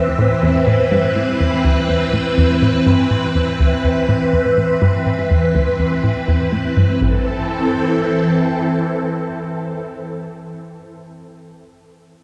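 A swirling, bright phased string machine holds sustained A minor chords up front through 10.0 seconds, while a round, detuned analog pluck with chorus and delay drives a low riff until 7.2 seconds and a very quiet, breathy wind-like noise texture drifts above until 7.0 seconds, a filter sweep on the synth arpeggio sound shaping the opening of this hypnotic, expansive 123 BPM sequencer-driven space music cut from a longer piece and soaked in cathedral reverb.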